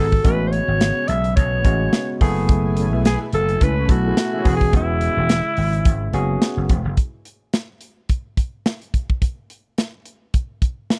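A swung 107 BPM groove in 4/4 drives this smooth, feel-good slice of early-eighties boogie funk in E major, where a punchy, up-front slap bass and a polished, airy studio drum kit with a punchy kick support a raspy, growling alto saxophone lead with slapback echo, backed by a round, dark chorused synth brass line in the background, a barky, bright tine electric piano through a combo amp, and a very quiet, shimmering pulse-width pad sustaining chords from Amaj13 through F#m11 to E6, before the drums carry on alone from 7.0 s to 11.0 s in a dry, close 1970s-style room.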